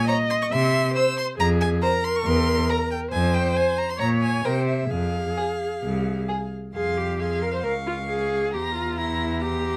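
An up-front, focused cello carries the bass beneath a clear, smooth first violin melody, a rich, expressive viola accompaniment with soft attacks and portamento, and a more distant second violin line, all bowed with vibrato, in this urgent, restless excerpt from a quick classical-period string quartet movement in F minor at 136 BPM, played with rubato and captured with close, detailed microphones in light reverb, with the cello entering at 0.5 seconds.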